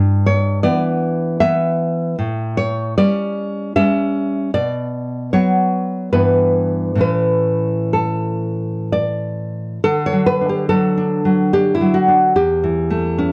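A fingerpicked nylon-string guitar opens this romantic solo piece in D major, its full-bodied, deep classical tone sitting up front in the mix. The mood is nostalgic and warm, moving in a rubato 3/4 at roughly 59-79 BPM, with the instrument tuned to A4 = 445 Hz and ranging from E2 to E5. The harmony begins on Em/G and passes through A7, Bm, a return to Em/G and then A, before a new section arrives at 9.8 seconds, settling on D and ending on A7/E. A moderate studio reverb gives the guitar a modest sense of space. The sound carries the character of worn old cassette tape, with a warbly pitch drift coloring the whole recording. This short excerpt, lasting 13.3 seconds, is cut from a longer piece.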